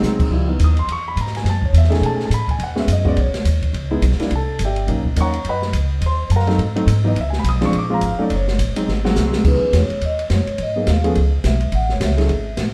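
Small-group swing and bop jazz with a smoky, late-night mood, cut from a longer piece, where a woody, thumpy pizzicato upright bass and an up-front grand piano with deep bass and short sustain play over a dark, smooth drum kit with punchy kick and dark cymbals in a stone room; a drum fill at 8.9 s then leads to a mellow, ringing vibraphone with soft mallets joining to take the melody from 9.5 s.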